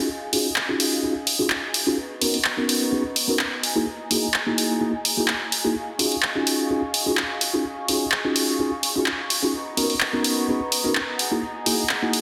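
Up-front, layered electronic house drums with handclaps and hi-hat enter at 0.3 s to drive this sensual, funky filtered disco house groove at 127 BPM in Eb minor, where a bright, bell-like tine electric piano, coloured by phaser and vintage 12-bit sampler grit, plays accompaniment over Ebm11, Bmaj9 and Emaj9#11 chords beneath a quieter, earthy bowed violin section holding sustained chords with light vibrato, as a filter sweep runs through the whole excerpt and a lush hall reverb sits on a dense, heavily limited modern master.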